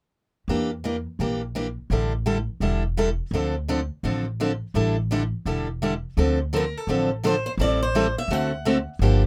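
Fiery yet bittersweet, this short excerpt of acoustic string swing in the jazz manouche tradition moves at a brisk clip with a light swing on the eighth notes. A bright, boxy parlour-style steel-string guitar carries the accompaniment up front from the start, picked with fresh-sounding strings, while a pizzicato upright bass with gut strings supplies a woody, thumpy low end beneath it. The harmony leans on minor colours, moving from Em7b5 through A7sus4 to Dm7 before shifting to Am7 and D7 as the second section arrives around 6.2 seconds. At 6.6 seconds a second picked guitar, bright and concert-sized with audible finger squeak, slips in with a brief melodic phrase that sits softer in the balance than the accompaniment. A modest booth ambience keeps the sound close and dry, giving the trio an intimate, in-the-room presence.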